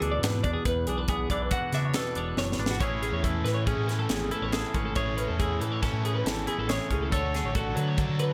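This short cut from a longer math rock and midwest emo piece opens at 139 BPM in a straight 5/4 in A major, with a bright twelve-string electric guitar picking arpeggios over a twangy, compressed electric guitar accompaniment. Beneath them, a round, overdriven fingered bass fills the low end, while a polished fusion kit sits up front with hi-hat, tight kick and a high-tuned snare in an airy studio room. The harmony rests on E7 until a drum fill at 2.4 seconds leads into Amaj7 at 2.8 seconds. There a biting, double-tracked overdriven guitar joins with a riff carrying spring reverb. The chords shift to Dmaj7 at 7.1 seconds, and a light reverb over the mix lends space to a mood that stays playful yet wistful.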